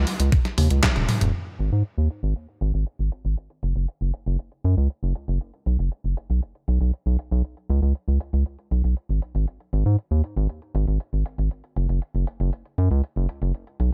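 Italo disco at 118 BPM in 4/4 with a straight feel, this bittersweet, melodramatic excerpt sits in G# minor. A round, deep analog bass stands up front throughout, blending sine and square-wave tones that are wave-folded into an evolving, mellow sustain with a fast attack, moving between D#1 and G#2. A detuned 8-bit digital drum machine with a sampler-style, tape-warm character supplies crash cymbal, handclaps, hi-hat, a medium-tuned snare and toms, placed up front and wrapped in gated reverb, with low-pass filtering on its hats, toms, snare and cymbals. A thumpy electronic kick drum appears only briefly at 0.3 s, and a drum fill at 1.0 s leads into the main passage at 1.3 s. A digital ambience surrounds the parts.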